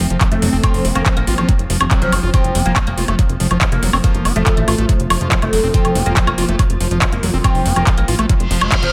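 A dreamy mix soaked in a lush hall reverb opens this short psychedelic trance excerpt, driving along at 141 BPM in 4/4 in F major over an F5 chord. A swarming, tense drone of detuned, granular sustained chords sits in the background with a subtle chorus and sidechain pumping. Alongside it, an overdriven acid bass plays a squelchy, gritty riff through analog delay, while a punchy, funky analog bass holds the low end with a plucky, decaying tone. A garage drum kit supplies metallic hi-hats, handclaps and woodblock, and an electronic kick enters at 0.2 seconds with a knocking thud, both carrying the boxy character of a small room. At 0.3 seconds a woody, plectrum-plucked oud takes the melody, its double strings colored by phaser, delay and pumping, and a reverse cymbal rises in at 8.4 seconds.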